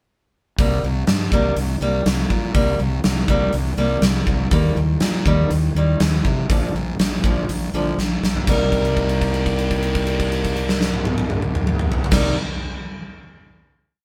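Recorded live in one room with light reverb, this brief, brooding alternative rock piece in C minor moves at 122 BPM in a straight 4/4, its dark verse shifting from C5 through Eb and Bb. A parlour steel-string acoustic guitar with fresh strings plays picked, palm-muted eighth-note arpeggios, while an up-front fingered electric bass, overdriven into a growly fuzz, drives eighth notes beneath a huge arena drum kit with a punchy kick, medium-tuned snare, bright cymbals, hi-hat and toms. A drum fill at 8.0 seconds leads into a held Cm7 final chord that rings from 8.5 seconds until the guitar stops at 12.4 seconds.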